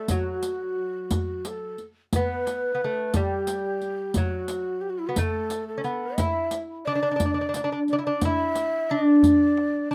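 A delicate, fingerpicked nylon-string lute with double strings carries the melody up front in this festive, passionate Persian modal ensemble excerpt in D dastgah mahur, moving at 59 BPM in a straight 6/8, while a breathy, mellow end-blown ney plays a crisp-attacked second line and a tight, hard-handed tombak joins a soft-handed riq with bright jingles on percussion, all caught by close, detailed microphones with little reverb.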